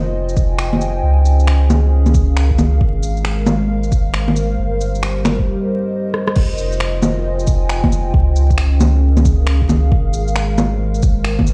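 A dark, detuned analog pad with chorus and a round, sine-like sub bass open this melancholic, rainy future garage excerpt together, both pumping against the sidechain as minor-seventh and added-sixth-ninth chords drift by under a swung sixteenth-note feel. Just after, a deep layered electronic kick and an up-front, small-room kit of bongos, finger snaps, rim clicks, shaker and crash cymbal join in. A drum fill at 6.1 seconds leads into the second section, and the whole mix sounds as if played back on a big system in a bare stone room, with vinyl crackle on top.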